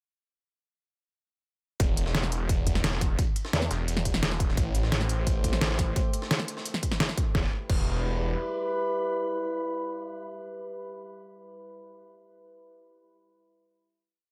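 This aggressive, futuristic dark technical drum and bass piece bursts into its drop at 1.8 s with a punchy electronic kick, a tight dubstep kit of deep snare, crisp hats and crash, a very quiet, gritty, pitched-up looped breakbeat heard in a large room, and a snarling, growling, sidechain-pumped distorted saw bass in chopped phrases. A chorused formant-sweep wobble bass joins briefly at 3.5 s, and an eerie metallic inharmonic drone with a slow attack and built-in reverb follows later, carrying on through the final chord until 10.9 s.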